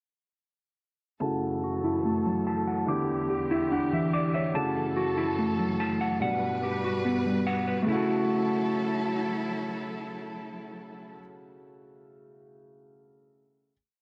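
A mellow, clean electric guitar sits up front, playing a falling arpeggio in eighths that repeats like a sampled loop, colored by spring reverb and tape echo, over a deep-bassed concert grand piano holding open-voiced chords and a distant, bowed string section with vibrato and portamento sustaining a soft pad. This dark, eerie hip hop and trap piece in F# phrygian moves at 144 BPM with a half-time feel, cycling through F#m7, Em7 and Gmaj7 in a breakdown with a filter sweep and a short piano fill at 3.3 seconds before settling on a final F#m7 at 7.9 seconds. A lush hall reverb surrounds the mix, the piano carries on alone until 13.7 seconds, and lossy compression artefacts tint the sound.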